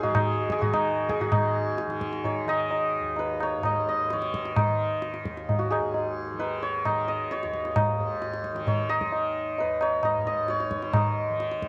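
Hindustani classical music in raga Malkauns on Eb, introspective and solemn, moves in 7/4 at 131 BPM and speeds up across this short cut, with a hammered, ringing santur carrying the melody up front over a softly plucked, buzzing tanpura drone and high-tuned tabla with a short ring, all heard through the character of a home cassette recording in a small room with light reverb.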